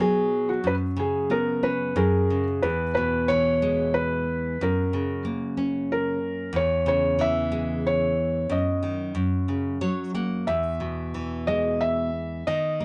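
A straight 3/4 pulse at 91 BPM carries this sleepy, innocent lullaby, an excerpt tuned to A4 = 439 Hz that drifts through B, E and F# harmonies. A felt-muted upright piano sings the melody up front with a soft, mellow, intimate tone and a vintage thin-felt character, while a fingerpicked nylon-string guitar gives full-bodied, deep classical accompaniment with audible finger squeaks and a brief fill at 9.5 s. Both parts play throughout within a moderate studio reverb and a dark production.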